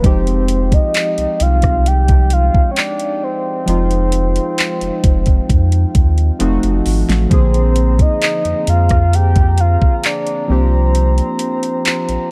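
A dry, dark mix carries this sensual, longing contemporary R&B excerpt, built on an up-front electronic drum kit of knocking kick, fat snare, metallic hi-hats, rim clicks and handclaps over a deep, round sine sub bass. A soft octave-layered synth lead sings the melody through chorus, tremolo and tape echo, while detuned analog keys with chorus and a filter sweep supply the accompaniment, and a distant brass ensemble holds sidechain-pumped sustained chords in the background. The drums break into a fill at 6.4 seconds as the harmony moves from Fm9 through F7b9 and Bb9 to C9sus4.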